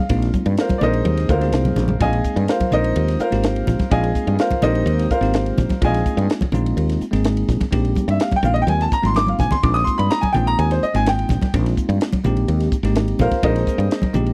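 A clear, boxy baby grand piano opens this soaring, slick electric jazz fusion excerpt, taking a solo melody up front at 126 BPM in a straight 4/4 over a Bb9sus4 chord. Almost at once a bell-like tine electric piano sounds bright and clean beneath it, while a woody fretless electric bass, growly and round with a hollow-body tone, sits up front and anchors the low end. A crisp fusion drum kit, dark and smooth with a high-tuned snare, tight kick and rolled-off top, drives the groove on hi-hat, ride and toms, breaking into fills at 1.8 seconds and again from 9.0 to 9.6 seconds. Congas with a thick, damped skin and soft hands enter at 0.3 seconds and stay in the background, compressed and saturated. The dry, close sound of a 1970s-style studio, with little reverb, keeps every part intimate and present.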